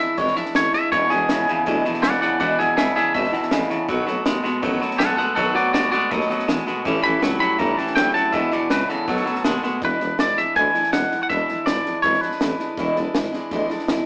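A straight 4/4 rockabilly groove drives this retro, upbeat fragment of a longer piece: a compact cocktail drum kit gives a dry, high-tuned snare and punchy kick, while a mellow tuba with light vibrato carries the bass. An up-front, compressed, twangy electric guitar takes the melody over a bright, full-bodied picked steel-string acoustic guitar, and a clean electric guitar plays a riff from 0.9 s until 9.8 s as the chords move from E7 through B7 and A7 into a shorter second section. The recording has a rough rehearsal-room character, with tube saturation, a small-speaker sound and a moderate stone-room reverb.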